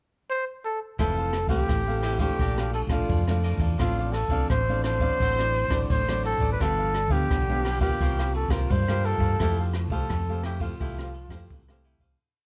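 A dark, softly reverberant production frames this short, joyful samba and choro piece in F major, moving at 86 BPM in a straight 4/4 with a playful lilt. A breathy, mellow trumpet opens alone on a pickup bar, then sits up front with a smooth top, vibrato and a plate reverb sheen, spinning a jazz-style, motif-based melody in period phrases. At 1.0 seconds the band enters: a bright, crisp cavaquinho picks out sixteenth-note strumming, while a nylon-string guitar with fresh strings fingerpicks a classical samba part of thumb bass and syncopated plucked chords. Underneath, a round, amped hollow-body electric bass plays a samba bass figure, and a distant, roomy brush kit with a boomy kick, ride cymbal and rim clicks carries the samba groove. The harmony moves from Fmaj7 through Bbmaj7, D7/A and G7 to a C7sus4, landing on Fmaj9 as the music fades out from 9.4 seconds to its close at 12.2 seconds.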